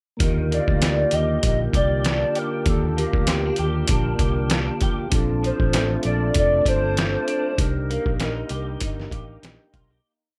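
A relaxed 98 BPM groove in 4/4 with a light sixteenth-note swing anchors this dreamy, sunny indie and bedroom pop piece. A gritty, pitched-down sampler-style trip hop kit sits up front with a thumpy kick and a dry backbeat. Beneath it, a dark, round fingered bass plays a melodic line with chromatic approach notes. A slightly broken-up, lo-fi electric guitar fingerpicks a rolling accompaniment through ensemble chorus, vibrato and plate reverb, while a flute-like tonewheel organ, softened by cassette tape, holds rootless chords through a slow rotary speaker. From 0.5 seconds, a hollow, woody clarinet-like synth lead with a soft attack sings sustained call phrases, coloured by phaser, analog chorus, tape echo and plate reverb, over Ebmaj7, Bbmaj7 and Cm7. The piece fades out from 7.6 seconds, and the organ adds a short fill at 8.8 seconds.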